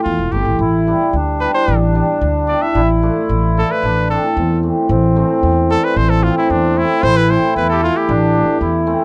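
A dry, close studio sound in a 1970s style, with little reverb, frames this short cut from a longer klezmer piece in A minor, set in a straight 2/4 at around 112 BPM and speeding up across its nine seconds. The mood is bittersweet and soulful, carried by a clear cornet that leads the melody up front from 0.0 seconds, played solo in a jazz style with vibrato between D4 and E5. Close behind, an upright bass plucks a woody, thumpy line on gut strings from E1 to E2, also up front. A hammered cimbalom adds shimmering, ringing accompaniment from 0.3 seconds, while a mellow, reedy accordion enters at 0.6 seconds with a second line whose slow beating sits mid-forward. The same phrase is stated twice, moving from Am through G/A and Dm/A before settling back on Am.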